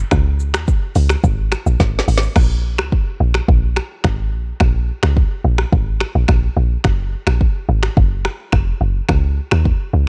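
A worn, warbling cassette-tape sound with drifting pitch and a dry room gives this sultry, mellow afrobeats excerpt in Bb minor at 107 BPM a hazy, lived-in character. Up front, a punchy log drum bass with a fast attack and decaying FM tone, layered with noise, moves between F1 and Eb2. Beside it, an electronic drum kit with a deep kick, a woody snare, rim clicks, finger snaps, shaker, crash and metallic hi-hats carries 12-bit sampler grit; it plays a fill from 1.8 to 2.4 seconds, after which the hi-hats fall silent.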